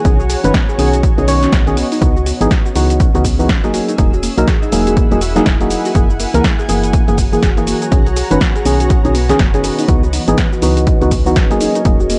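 A dry, gritty deep house excerpt at 122 BPM with a hypnotic, deep mood, where an up-front punchy electronic kick and an analog drum machine's hi-hat, shaker and snare drive a swung groove beneath a woody FM bass, hollow organ-like stabs with chorus, tape echo and sidechain pumping, a very quiet soft round pluck playing arpeggios, and a blurred, evolving granular cloud pad, while a moody, nasal dark analog pad enters at 9.9 seconds over chords moving from B69 through Emaj9#11 and F#9.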